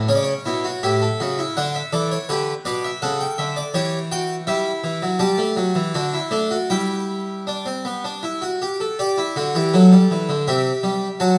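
A solo French-style harpsichord opens this stately, joyful baroque-style three-part fugue, its brilliant, plucked tone sounding close and up front, with three sets of strings ringing across a range from A2 to A5. At 81 BPM in 3/4 with a straight feel and tuned to A4 = 438 Hz, the harmony moves from A through D and G before a new section arrives at 9.0 seconds, settling on G and then C. A moderate recital-hall reverb gives the instrument space in this short passage cut from a longer piece.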